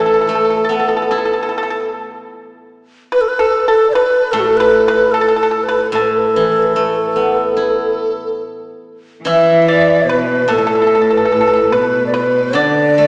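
In a free, rubato 4/4, this graceful and festive excerpt of Chinese traditional chamber music sets a breathy, reedy xiao on the melody over a mellow, hollow large dizi with vibrato in the background, a dry, percussive pipa and a ringing, silvery steel-string zither played with fingerpicks, before a rich, expressive bowed cello with portamento joins at 9.2 s, the ensemble heard from further back in a wet concert-hall reverb with a small-speaker sound.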